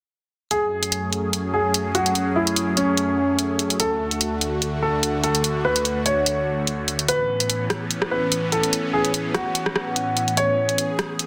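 Swung, half-time heavy wobble dubstep with an aggressive, menacing edge, as an overdriven electronic drum kit of hi-hat and rim click drives alongside a dark, intimate grand piano melody, noisy with key action and echoed on tape, while a lush, detuned supersaw pad with phaser sustains chords moving from F#madd9 through D to Aadd9 in this short cut from a longer piece.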